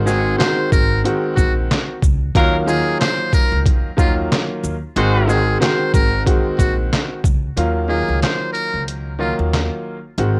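Boom-bap hip-hop with a dark, moody swing, where a gritty, pitched-down sampler kit with a thumpy kick sits up front beside a smooth vintage upright piano through cassette tape and plate reverb, a woody pizzicato upright bass anchors Ab7 and Ebmadd9 chords, a buzzy muted trumpet sings a jazz-style solo with vibrato and scooped notes until 9.4 seconds, and a tight, punchy horn section drops in stabs with analog delay from 2.4 to 5.4 seconds, all colored by light reverb and a faint mains hum from a home cassette recording.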